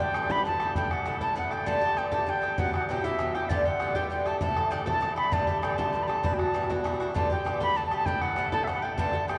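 A mellow wooden flute carries the melody up front, its airy, soft-attacked tone and rolled-off highs giving this bright, cheerful Celtic slide a gentle glow. Beneath it, an Irish bouzouki supplies picked accompaniment, its double strings ringing with a metallic edge. A bodhran adds boomy, open percussion that seems to sit in a large room. The three parts play together through the whole 9.4-second fragment, cut from a longer piece, in a lilting 12/8 with a straight feel. The harmony circles through Gsus2, Am and Emadd9, lending an open, suspended colour. A heavy cathedral-like reverb bathes the ensemble, giving the church or concert-hall recording a spacious, echoing atmosphere.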